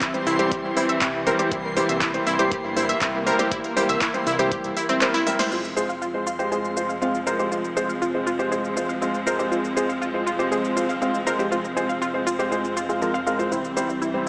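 Heard through a small speaker in a moderate recital hall, this bittersweet, dreamy progressive house excerpt moves at 120 BPM in F harmonic minor, with sidechain pumping breathing through the rich, bowed chamber strings, the round, chorused analog pluck arpeggios with their 12-bit grit and digital delay, and the soft, muted upright piano stabs up front, audible action noise and all. A deep house kit with a punchy snare, smooth hats, claps, shaker and crash runs throughout, joined by a knocking, tape-tinged electronic kick until 4.6 s, while a very quiet, reversed granular swell glimmers high above and a fat, saturated sawtooth bass sits in the background. A drum fill and band accent lead the harmony from C to Fm at 5.5 s.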